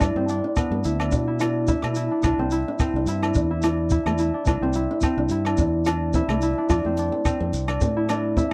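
Carefree and sunny, this brief highlife guitar band excerpt moves at 108 BPM in 4/4 with a light sixteenth-note swing in C major, its chords shifting from G to C at 2.2 seconds and to F at 6.7 seconds. Up front, a mellow, thumb-plucked concert harp rings out arpeggios with a slapback echo beside a round, amped fingered electric bass, while a dark, boxy, fingerpicked nylon-string guitar sits in the background. A compact cocktail drum kit with a tight kick, hi-hat and rim click anchors the groove, joined by grainy, band-limited shekere and close, ringing agogo bells in the background, all captured in a dry, close 1970s-style studio sound.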